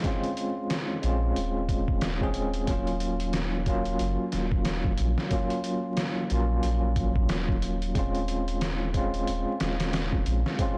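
A swung 91 BPM trip hop groove in 4/4 opens this dark, smoky Eb dorian excerpt, with pitched-down, compressed sampler-style drums sitting up front (a gritty, thumpy kick, a medium-tuned snare and hi-hat re-recorded in a large room), while a bell-like, bright tine electric piano moves from a rootless Bbm9 through Ebm9 to a rootless Bbm9/Eb with tremolo, tape echo and vintage 12-bit sampler character, and a deep, round, soft sub bass with transformer saturation enters at 1.0 s, the whole blown-out, overdriven recording carrying vinyl crackle and digital ambience.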